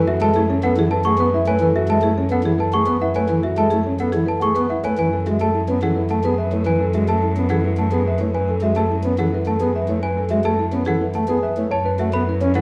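Meditative yet urgent, this excerpt of minimalist classical pattern music in 3/4 sets a buzzing, woody marimba melody over a chamber organ's smooth principal-stop accompaniment with audible chiff, dark and boxy grand piano arpeggios with audible action noise, bell-like celesta arpeggios entering at 0.1 s, and a single bowed cello holding a low bass note with vibrato and portamento, all in a recital-hall reverb as the harmony shifts from F#m11 to Aadd9/F# at 11.7 s.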